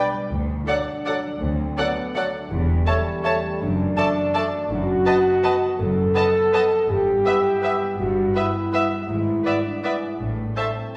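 An orchestral ballroom waltz in 3/4 at 164 BPM opens with most of the ensemble at once, the mellow French horn section up front holding sustained chords while the violins sing a lush, vibrato-rich melody over an oboe and a second violin line, with bassoon, violas and ringing harp arpeggios behind them. The cello and double bass sections join on the bass at 0.3 s, and the bittersweet, dark mood settles into E minor from 4.7 s, with uneven beats and rubato giving the dance a yielding sway. A wet recital hall reverb lends the whole a roomy, churchlike glow across this 11-second passage cut from a longer piece.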